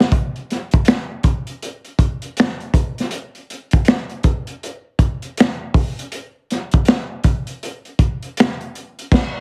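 The recording is dry and heavily compressed, with a radio-like quality that pushes everything close to the listener. This short R&B excerpt, cut from a longer piece, moves at an unhurried 80 BPM in 4/4, its sixteenths swung to lend a loose, sultry sway. Its only part is a crunchy breakbeat drum kit, recorded acoustically in a small room and placed up front, with a punchy kick, a high-tuned snare, hi-hat, finger snaps and a crash cymbal. The kit sounds saturated and gritty yet smooth, with dark cymbals and a rolled-off top that keep the mood introspective. The groove runs as a single section until an accent lands at 9.1 seconds, just before the drums stop at 9.4 seconds.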